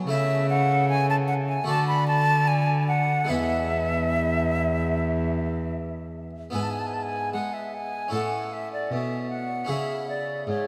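An airy, vibrato-laden silver concert flute carries the melody up front in this serene, dance-like excerpt of a baroque-style classical sonata movement at 76 BPM in 4/4, joined at 0.1 s over a continuo of rich, bowed solo cello with soft attacks and expressive portamento and a brilliant, plucked French-style harpsichord. The harmony moves from A/C# through D and E before the second section arrives at 6.5 s, turning through E/G# and A to close on C#m. A vast cathedral reverb with a long, echoing tail surrounds the ensemble.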